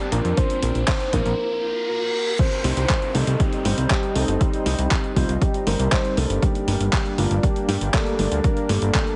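Heavily compressed and radio-like with a light reverb, this nostalgic, melodramatic italo disco excerpt in G minor moves at 119 BPM over Bbadd9 and then Gm. An up-front punchy electronic kick and a gritty, sampler-style soul kit with crash, handclaps and hi-hat play alongside a fat, tube-saturated analog bass with a filter sweep, while a dark, boxy grand piano plays stabs and a lush detuned pad holds chords in the background. A soft, round, octave-layered synth lead sings the melody with chorus, vibrato and tape echo, and electronic sound effects add a riser and a reverse cymbal into a break from 1.4 to 2.4 seconds, along with a downlifter.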